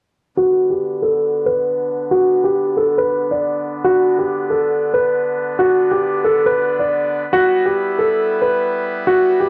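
Hip hop with a tense, cold half-time feel, this short cut from a longer piece sets a dark, mellow grand piano melody up front over reedy, mid-forward accordion chords, both parts low-pass filtered and running from 0.4 to 9.5 seconds under a filter sweep, as the harmony moves from Bm to Em at 7.3 seconds in a dry, gritty recording touched with light reverb.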